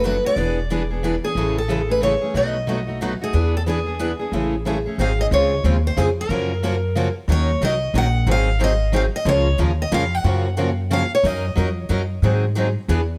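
Acoustic string swing in jazz manouche style, charming and playful at 182 BPM in a swung 3/4, where a bright, up-front concert steel-string guitar carries the melody through tape echo over two more picked steel-string guitars, one full-bodied jumbo and one boxy parlour, plus a woody, thumpy pizzicato upright bass on gut strings, all in light reverb, as the harmony moves from A major to Db major at 5.3 s in this short cut from a longer piece.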